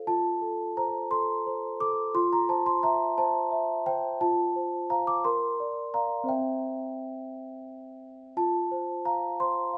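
A large celesta plays alone throughout this short classical lullaby, its bell-like, mellow tone sitting up front and ringing into the moderate reverb of a scoring stage. In a gentle 6/8 at 58 dotted-quarter beats per minute, it moves through a tender, innocent progression in F major, from F through C over F, Bb and C before returning to F at 8.4 seconds. The 9.8-second passage is cut from a longer piece.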